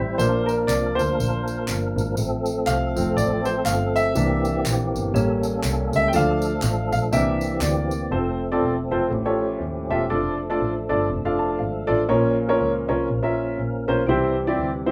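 An upright piano with a woody, long-sustaining tone takes the lead from the opening of this jubilant, swinging uptempo gospel passage. Beneath it sit a dark, very quiet French horn section, a fat, percussive tonewheel organ with key click, chorus vibrato and a slow rotary speaker, and a bowed double bass with vibrato and portamento. Compressed, saturated tambourine, egg shaker and group handclaps join at 0.2 seconds and stop at 8.0, just before the horns drop out at 8.1. The piano, organ and bass carry on, with a piano fill at 11.1 seconds, all in a soulful, rough home-demo sound and a small, reverberant room.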